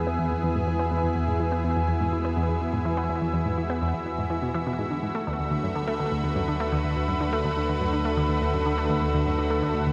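Ambient, sequencer-driven space music with a cosmic, expansive mood, moving at a steady straight pulse in 4/4 through this short excerpt cut from a longer piece. A lush, thick unison pad of detuned sawtooth and square waves sits bright and up front with sustained chords, dressed in chorus and shimmer reverb, while a round, nasal analog pluck with a fast attack and short decay plays a riff through chorus and tape echo, all underpinned by a deep sine sub bass. The echo-heavy mix sits in a wet spring reverb with softened highs, and the harmony shifts from Eadd9 to D6 at 5.1 seconds.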